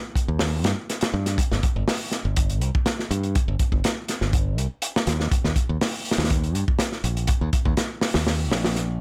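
A crunchy breakbeat drum kit of hi-hat, kick and snare drives this energetic, raw breaks excerpt at 122 BPM in a straight 4/4, its dark, gritty, saturated tone and rolled-off top sitting up front beside a bright, punchy fingered electric bass with tube saturation that moves between G1 and G2, all in a dry sound with little reverb.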